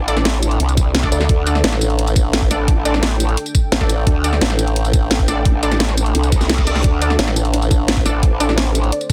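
A growling, saturated bass sits up front through this futuristic, mechanical excerpt of dark technical drum and bass at 173 BPM, joined by a formant-sweep wobble bass built from pulse and sine waves, while a cracking-snare kit with hi-hat and tambourine and a knocking electronic kick that enters at 0.8 seconds drive the straight 4/4 groove. Bold, punchy orchestra-hit-like stabs with tape echo and a cassette grain cut through, as a deep, moody sawtooth pad with a sub octave pumps underneath in the background. A reverse cymbal appears at 6.3 seconds just before a soft, round pluck arpeggio joins at 6.8 seconds, all sealed in light digital ambience and a dense, heavily limited modern master.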